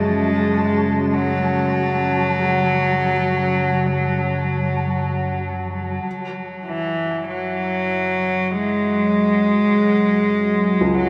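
Drenched in a huge, wet reverb, this brief, unsettling dark ambient drone drifts in free time in F# minor. A rich, floating cello carries the melody with a soft attack, touched with delay, over a dark, boxy baby grand piano whose arpeggios carry audible action noise, while a warbling, detuned analog drone with chorus hums beneath. A grainy, flickering texture glimmers in the background until 6.1 seconds, when the harmony settles onto an open F# fifth, and a deep, moody pad with chorus enters at 7.6 seconds.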